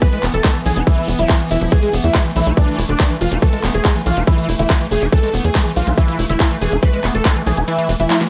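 A straight 4/4 pulse drives this hypnotic psychedelic trance excerpt, where an overdriven, up-front electronic kick and a layered kit of cracking snare, bright hi-hat, ride cymbal, handclaps and toms sit under a punchy sawtooth sequencer bass, a squelchy, resonant acid bass riff with chorus and dub echo, a faint gated chord texture, and a huge, detuned supersaw melody with phaser, sidechain pumping and echo, until the kick drops out at 7.7 seconds and a drum fill lands at 8.1 seconds.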